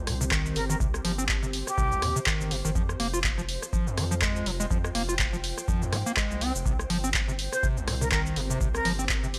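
Acid house at 123 BPM in C minor, driving and raw, with a squelchy, resonant acid bass riff carrying chorus, delay and sidechain pumping over a round, dark analog bass, an up-front drum machine of handclaps, hi-hat, rim click and shaker, a deep tape-warm electronic kick, and a mellow, ethereal pad with ensemble chorus and reverb, while a breathy jazz flute with vibrato and delay appears at 0.6 and again at 7.5 seconds, all in a dry, gritty hardware recording over Cm, Fm and C5 chords.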